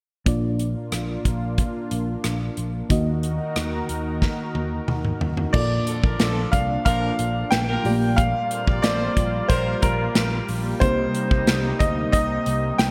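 A bright, brilliant grand piano carries the melody from 5.5 seconds, out front over a punchy gated-reverb drum kit, a fingered electric bass, a soft FM electric piano with chorus, a thick warbling detuned pad and brief horn-section stabs, all glossed by lush hall reverb in this glossy, uplifting 1980s-style pop passage that moves from Bb through Ebm to Bbmaj7 and Cm7.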